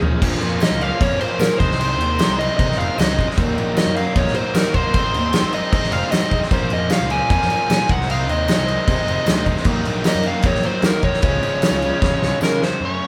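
A dark, compressed fuzz lead guitar carries the melody through this short cut from a jangly, carefree indie rock track at 153 BPM in Db major, entering at 0.6 seconds. Beneath it, a cranked stack guitar plays a double-tracked, overdriven riff alongside a fuzzed, picked electric bass, giving the low end a thick, amped grit. The loose drum kit sits up front with a fat snare, punchy kick and dark cymbals, framed by a roomy, distant sound with a rolled-off top, and fills open the passage and return from 12.0 to 12.8 seconds. A very quiet vintage combo organ holds buzzy sustained chords with light vibrato, while a jingly tambourine adds a faint shimmer. The chords cycle through Bbmadd9, Ab/C, Ebm and Ab before landing on Db, all captured as a band playing live in one room with moderate studio reverb.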